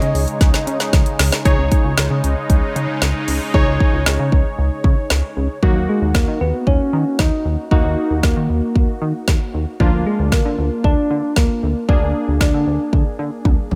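A nocturnal, driving synth-pop passage from a longer piece opens on up-front deep house drums, with a deep kick, woody snare and dark hats and a fill at 0.4 s, under a glossy pulse-wave synth bass, round detuned analog keys and an airy, resonant pad that sweeps until a gentle FM struck lead, heard briefly at the start, returns at 5.6 s with vibrato and digital delay in a dry space.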